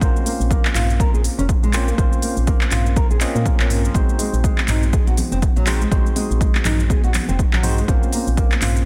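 Afro house at 122 BPM in Bb minor, this hypnotic, earthy excerpt rides a swung sixteenth-note feel over chords moving from Bbmadd9 to Ab7 and back. A punchy electronic kick sits up front, joined by a deep house kit of handclaps, smooth hats, shaker and toms, both re-recorded in a small room. A woody, round FM bass with a fast attack and dark decay pumps against the kick, while a small, thumb-plucked nylon-string guitar spins dark arpeggios with audible finger squeak. A clean tine electric piano, heard through built-in speakers, adds stabs, and both it and the guitar trail dub echo and sidechain pumping. Very quiet, bright, band-limited congas with hard hands enter at 3.9 seconds, all within a digital ambience and a dense, heavily limited modern master.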